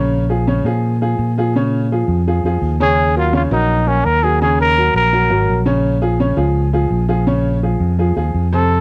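A driving, sultry jazz excerpt in straight 4/4, cut from a longer piece, moving through Bbm7, Ebm7 and back to Bbm7 over its 8.8 seconds. A woody, boxy upright piano carries the accompaniment throughout, sitting up front in the mix. A fingered electric bass, amped and punchy, anchors the low end from start to finish. The breathy trumpet takes the melody as a solo from 2.8 to 5.6 seconds and returns briefly at 8.5 seconds, its dark, whispered tone shaded by light vibrato, soft attacks and scooped notes. Close, detailed microphones and light reverb give the trio an intimate, present sound.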